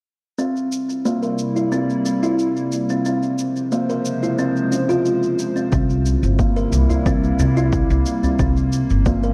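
Worn cassette-tape warble and pitch drift inside a moderate concert hall reverb frame this mystical organic downtempo excerpt at 90 BPM in C phrygian dominant, where an up-front, hollow, woody kalimba plays mellow arpeggios through a filter sweep and digital delay over a nostalgic, detuned lo-fi pad with chorus, phaser and sidechain pumping, a layered electronic shaker sits beneath from 0.4 s, a thumpy gut-string upright bass and a punchy electronic kick arrive at 5.7 s, and a deep, dry udu joins in the background at 6.9 s, as the chords move from C7 through Dbmaj7/C to Bbm7.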